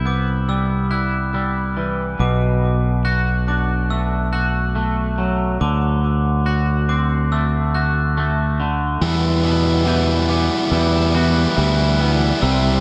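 Post-rock at 70 BPM in E minor, this cinematic, brooding fragment of a longer piece sets a twangy, chorus-lush electric guitar's arpeggios against the bell-like ringing of a vintage-toned glockenspiel played with brass mallets, both trailing diffuse ambient delay, over a growling overdriven fingered bass, moving through Cmaj7, Bm7 and D7 before a bright, overdriven distorted guitar riff enters at 9.0 seconds to drive a build-up on Emadd9, all within a dreamy mix soaked in plate reverb.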